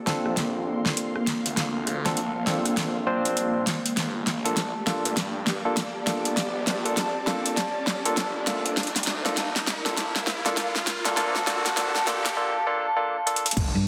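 Glitch hop with a swaggering, gritty edge, this short cut from a longer piece is one long build-up over a swung sixteenth-note feel, moving between Bbmaj7 and Gm7 chords. An ethereal, airy pad sustains throughout with ensemble chorus and its own reverb, pumping against the sidechain. Meanwhile, a barky, up-front tine electric piano plays stabs through delay and a low-pass filter sweep that spans the whole passage. A pop drum kit with a fat snare, metallic hats, rim clicks and crashes sits up front and runs through drum fills, while a swirling, detuned saw bass with phaser and overdrive churns in the background. A riser enters at 0.6 seconds, and an impact lands at 13.6 seconds alongside a single punchy electronic kick, before a round, dark hollow-body electric bass closes on one G2 note. The dense, heavily limited master is bathed in a wet digital room reverb.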